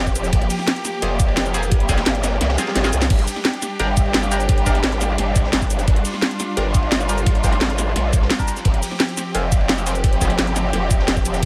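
A small-room sound frames this dark, aggressive slice of technical drum and bass at 173 BPM in G phrygian, where a growling, wobbling bass sits up front with overdrive, chorus and sidechain pumping under distant, lush bowed strings holding sustained chords. A knocking electronic kick and a layered kit with a cracking snare and bright hats drive the groove, while a very quiet, gritty breakbeat kit with dark cymbals and a high-tuned snare adds texture beneath. A nasal, band-passed chord stab with phaser and delay flickers in the background, and around 2.4 seconds the kick drops out for a brief electronic swell and drum fill before the harmony shifts from Fm to Gm at 3.1 seconds.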